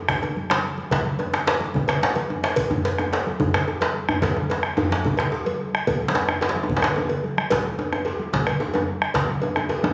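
A drum fill opens this powerful, festive West African drum ensemble passage in 12/8, cut from a longer piece, as a deep, dark bombo, thick-skinned, damped congas struck with hard hands, an up-front djembe played with soft hands, a tight, cracking second djembe set far back in a large room, and a metallic cowbell in the background drive the groove, with another fill at 7.0 seconds and the whole captured on a phone in a reverberant concert hall with added compression.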